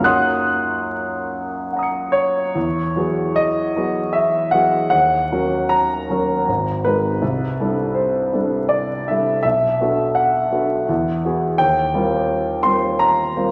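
Impressionist classical solo piano in a dreamy, hazy mood, moving in a flexible, rubato 3/4 across a range from Ab1 to Db7. The grand piano sits up front with a present, warm tone and long sustain, drifting through colorful chords such as E69, Ebm7, Abadd9 and C69 after a short opening phrase gives way to a new passage at 2.6 seconds. A wet concert hall reverb and a vinyl crackle add to the haze of this fragment, which is cut from a longer piece.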